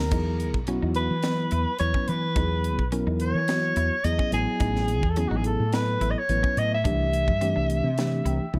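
A breathy soprano saxophone and a woody fretless bass open this short cut from a longer electric jazz fusion piece, which moves at 107 BPM in a straight 4/4 with a soaring, bright mood. The saxophone carries the melody up front, its soft attack, vibrato and whispered, intimate tone set in a roomy, slightly distant space. Beneath it, the dark, round fretless bass sits close and punchy, colored by an analog chorus. From 0.1 seconds a mellow tine electric piano fills in the harmony with a clean, warm sound, while a picked semi-hollow electric guitar adds compressed, clean stabs in the background with a subtle chorus. A crisp, polished drum kit with a high-tuned snare, a punchy kick, hi-hat, toms and crash cymbal plays in an airy studio room. The chords move from Emaj9 to Amaj7sus2 at 4.3 seconds and C69 at 6.8 seconds, and the electric piano closes with a fill from 8.0 seconds.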